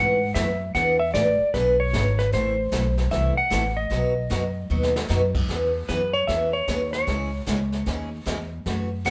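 A dark, clean lap steel guitar carries the melody up front with slide and fingerpicks in this cheerful western swing excerpt in E major at 152 BPM, backed by a bright, full-bodied picked acoustic guitar, a woody pizzicato upright bass and a brushed jazz kit with dark cymbals and a boomy kick that enters at 0.3 s and plays a fill at 4.7 s, all captured live in one room with moderate studio reverb.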